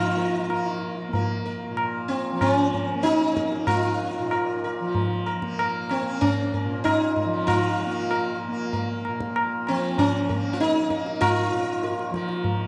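A straight 3/4 pulse at 95 BPM gradually speeds up in this introspective, meditative Hindustani classical excerpt in Bb raga kafi, tuned to A4 = 442 Hz, where an up-front, round sitar carries the melody with plectrum-plucked buzz and the shimmer of sympathetic strings over a bright, softly plucked tanpura drone, while a high-tuned, ringing tabla joins at 0.5 s, all set in a vast, echoing cathedral-like space with a long, wet reverb.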